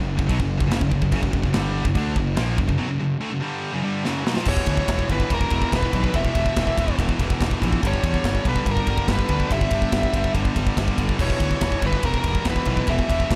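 A straight 4/4 pulse at 143 BPM drives this dark, epic heavy metal fragment, with a tight, polished acoustic kit up front (bright cymbals, medium-tuned snare, tight kick) pushing three picked, distorted rhythm guitars: two bright high-gain parts and a double-tracked, dark fuzz guitar, all set back in the mix over an overdriven, fuzzy picked electric bass. After an opening on F#, a break arrives at 2.8 seconds and a drum fill closes it, leading at 4.5 seconds into a passage moving through Em, G and back to Em. There a nasal lead guitar with a parked wah carries the melody, overdriven and touched with tape echo, in a dark, warm, dry production.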